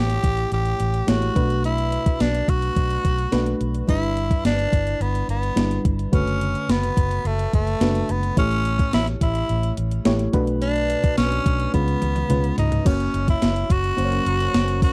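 Nostalgic and urgent, this short 1980s-style pop excerpt in B minor moves at 107 BPM, with a raspy, up-front tenor saxophone melody carrying tape echo over mellow FM electric piano chords, a round, foam-muted fingered electric bass, and a thumpy, overdriven digital drum machine with a gated reverb snare that moves into a fill at 11.7 seconds before chorused synth brass stabs arrive at 14.0 seconds, all captured in a dry, close studio sound.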